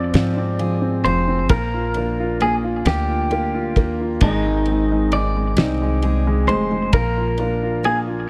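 A clean, twangy electric guitar sits up front with the melody, its picked, compressed and scooped tone carrying a touch of delay across this romantic, swaying six-eight pop ballad at 44 BPM in dotted quarters. Beneath it, a damped 70s drum kit keeps a straight feel on kick, snare and ride from 0.1 seconds, sounding dry and dark with a fat snare, tight kick and rolled-off top. A pizzicato upright bass on gut strings adds a woody, thumpy low end close to the listener, while a clear, natural upright piano fills in the accompaniment. Set further back, a full-bodied, fingerpicked dreadnought acoustic guitar plays arpeggios through its own delay. Studio reverb wraps the ensemble as the harmony moves from F minor to B-flat, then A-flat at 4.2 seconds and back to B-flat, in a short section cut from a longer piece.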